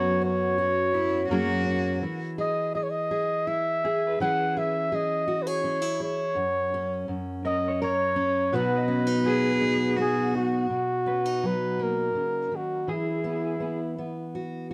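Acoustic folk-pop ballad in 3/4, nostalgic and tender, in which an up-front flugelhorn plays a mellow, jazz-inflected solo melody with light vibrato and scooped notes over fingerpicked steel-string acoustic guitar with fresh strings and audible finger squeak, while a close, bowed cello adds brief sul tasto lines at 0.9 and 9.3 seconds and a twangy, slightly broken-up electric guitar with tremolo plays arpeggios in the background, the whole fragment wrapped in a dark, warm production with light reverb.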